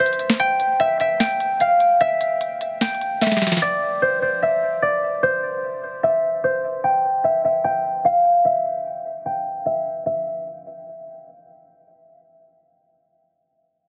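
Hip hop trap with a menacing, eerie mood at 149 BPM in a half-time feel, this cut from a longer piece pairs an up-front, fingerpicked concert harp melody, ringing between C5 and G5 through a low-pass filter with a sweep and digital delay, with electronic trap drums of sharp snare and crisp hi-hats that play only from 0.1 to 3.7 seconds and close with a fill at 3.2 seconds, all set in light reverb and small room ambience under a dense, heavily limited modern master.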